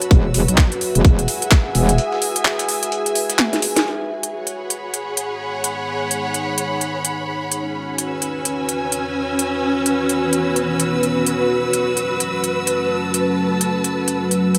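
Bass house at 128 BPM in G# phrygian, swaggering and aggressive, where a tight electronic kick and a metallic, saturated wobble bass open with a brief punch before a break at 2.0 s, while a faint gritty sampler-style kit plays until 3.8 s and a garage kit with cracking snare and crisp hats, a lush bowed string section and a deep, moody detuned pad pumping under sidechain carry on through chords from Eadd9 to F#m, the pad filtered from 3.9 s after a drum fill and band accent, all set in a moderate plate reverb.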